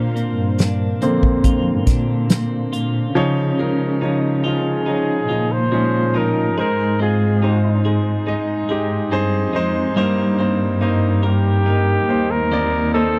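A clear, vintage-toned flugelhorn with slapback echo carries the melody from 4.5 s in this hopeful, tender pop ballad at 70 BPM, over an intimate concert grand piano with audible action noise, bright, twangy arpeggios on a twelve-string electric guitar, a dark, woody bowed cello section holding the bass, a brief acoustic drum kit with a fat snare and bundle sticks that stops at 2.9 s, and a detuned sawtooth pad with chorus in the background that drops out at 3.1 s, all in a dry, close 1970s-style studio sound.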